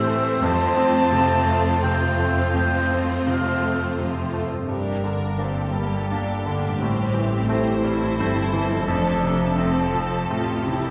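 A wet hall reverb surrounds this moving, uplifting cinematic orchestral excerpt in F major, played at 85 BPM in a rubato 3/4, where a brilliant, up-front grand piano with audible action noise carries the accompaniment over a smooth, close cello section, a lush viola section in the background and a very quiet, ringing harp in arpeggios. A dark, expressive violin section with portamento and a mellow, distant solo oboe share the second line at the start, the oboe dropping out at 4.0 s. At 4.7 s, a distant studio violin section takes the melody as the chords move from F through Gm and Am7, joined by a focused double bass section and a brief, soft triangle.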